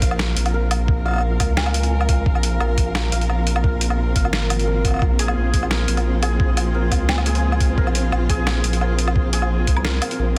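A dark, bowed cello section anchors this tense, heavy half-time drum and bass passage, holding sustained chords with expressive vibrato and a sidechain pump, while a bright, hammered santur rings out shimmering arpeggios through tape echo. Underneath, a deep, saturated sine sub bass sits up front, and a gritty, pitched-down electronic kick thumps through studio reverb. A compressed, sampler-style boom bap kit adds hi-hat, a medium-tuned snare and woodblock, also in studio reverb. Far in the background, a flickering granular texture hovers, and a soft, warbling FM bell chimes briefly at 1.6 and 7.1 seconds with chorus and dub echo. The kit stops at 10.2 seconds in this section cut from a longer piece, and the dense, heavily limited modern master places the parts in a digital ambience.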